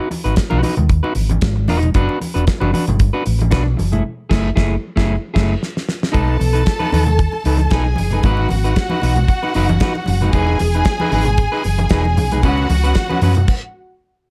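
Sultry and danceable, this disco cut moves at 114 BPM in a straight 4/4, lifted from a longer piece. A damped 70s drum kit sits up front with a fat snare, tight kick, dark cymbals and gated reverb, while ringing, medium-tuned congas sit in the background and a round, amped fingered electric bass anchors the low end. An electric guitar at the edge of break-up, dark and slightly broken-up, fills in the harmony over chords that move from G#m7 through a rootless Gmaj7 to F#m9. The band hits accents from 4.0 seconds, and a drum fill leads into a new section at 6.1 seconds, where a bright, lush studio string section enters with intense vibrato over B7, G#m7, Emaj7 and C#7sus4. The whole thing sits in light reverb with a small room ambience and ends on a stop at 13.5 seconds.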